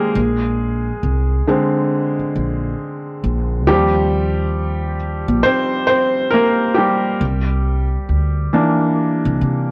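Nostalgic and reflective, this lo-fi hip hop excerpt in 4/4 with swung sixteenths opens at 0.0 s with a soft, intimate felt-muted upright piano, low-pass filtered with audible action noise, moving through Bb7, Eb6 and C7 chords, joined at 0.2 s by a woody pizzicato upright bass, both up front in light reverb and studio ambience with a cassette-tape character.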